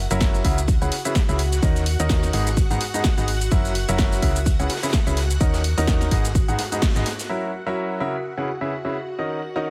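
Piano house with a bittersweet, energetic swing, led by a bright, up-front grand piano riff with audible action noise over shimmering vintage string-machine chords in the background, a round, dark FM bass that drops out at 7.0 seconds, a punchy layered electronic kick, filtered analog drum-machine hats, shaker and snare, and a very quiet, gritty garage kit, all in a small room with a band accent at 6.8 seconds.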